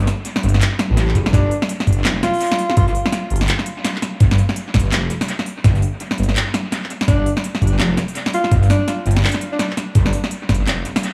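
Half-time drum and bass at 167 BPM with a 60% swing on the sixteenths, dark and tense in this short cut from a longer piece. A thick, swirling detuned saw bass with phaser sits up front from the start, beside a layered electronic kit of cracking snare, crisp hats and handclaps soaked in dub echo, while a knocking electronic kick enters at 1.2 seconds. A warm, forceful alto saxophone with vibrato and tape echo plays jazz-style solo phrases at 1.3 and 7.1 seconds, all set in an echo-heavy mix with light studio reverb.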